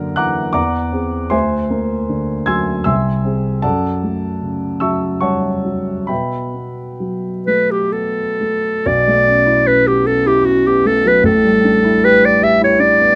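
Wistful and hazy, this impressionist classical duo for clarinet and baby grand piano drifts in 3/4 at 60-80 BPM with a free, rubato feel in B minor, cut from a longer piece. The piano opens alone at 0.0 seconds as accompaniment, its dark, mellow and smooth vintage tone ringing with long sustain across a broad range from A1 to G#6, moving through shadowy augmented chords before settling onto F#m7 and a bare B5. At 7.5 seconds the clarinet enters with the melody, a close-miked, warm classical solo sitting up front and confined to a narrow span from F#4 to E5. Around 8.9 seconds the harmony shifts to a new section, blooming into Bm11 and then A9sus4 beneath the clarinet line. Light reverb and a dark, warm production wrap both instruments in a hazy, veiled atmosphere.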